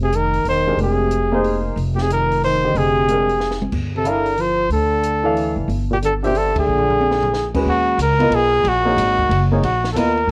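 Hypnotic and intense, this modal jazz excerpt in F dorian swings at 183 BPM in 3/4, cut from a longer piece. A clear, close-miked trumpet carries the melody up front with vibrato and a touch of plate reverb, while a mellow, breathy trombone with scooped notes shapes a second line beneath it until 7.5 seconds. A woody, growly pizzicato upright bass sits prominently under both, its steel strings given transformer saturation. A compact cocktail kit plays dry and natural with dark cymbals, a high-tuned snare and a punchy kick, adding fills and a band accent at 6.5 seconds. An intimate baby grand piano enters at 0.7 seconds with audible action noise, moving through Fm9, G7sus2 and Bb7 before the harmony shifts to Ebm9 at 7.7 seconds. Light reverb and the drift of worn, warbling cassette tape give the sound its aged character.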